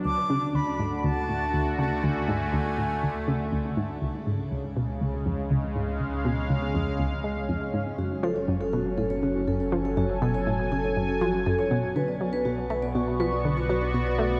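A wet, lush hall reverb bathes this dark, mysterious, expansive passage of sequencer-driven space music, which moves at 121 BPM in F# harmonic minor over D, C#, F#m and Bm chords. A sweeping, warbling vintage pad sits up front with chorus and shimmer reverb, while a fat, thick analog bass fades in underneath. A round, nasal analog pluck riff with a detuned, wave-folded edge runs throughout. An airy wooden flute sings a brief expressive melody until 3.8 s, and metallic, ringing vibraphone arpeggios with slow motor vibrato enter at 8.0 s, both trailing analog delay and shimmer reverb.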